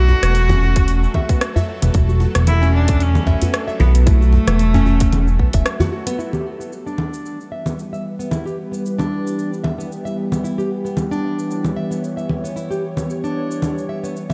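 Organic downtempo at 113 BPM in E dorian with a hypnotic mood, built on full-bodied fingerpicked nylon-string guitar arpeggios through a low-pass filter and tape echo and a tense, string-like drone with vibrato and sidechain pumping, while a clear bowed cello melody with analog delay, a dark sawtooth synth bass up front, a dry djembe with metal rattles and an overdriven electronic kick drop away at a short break at 5.7 seconds, after which the afro-pop kit of congas, metallic hi-hat, rim click and shaker carries on with the guitar and drone as a filter sweep runs on the drone from 6.2 seconds.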